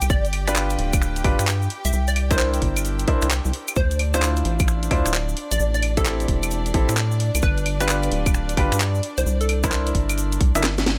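Set in a small room, this skippy, soulful two-step garage passage, cut from a longer piece, swings over a rubbery, wave-folded square bass and a tight, layered electronic kick, while a garage kit adds cracking snare, bright hats, claves, finger snaps and handclaps, with a grainy cabasa tucked in the background. A hollow, detuned square pluck carries the melody through chorus and tape echo, a brilliant baby grand piano drops stabs trailed by dub echo, and a biting studio violin section holds sustained chords under sidechain pumping, moving through G7, C9, Dm9 and Am7. A drum fill closes things out at 10.6 seconds.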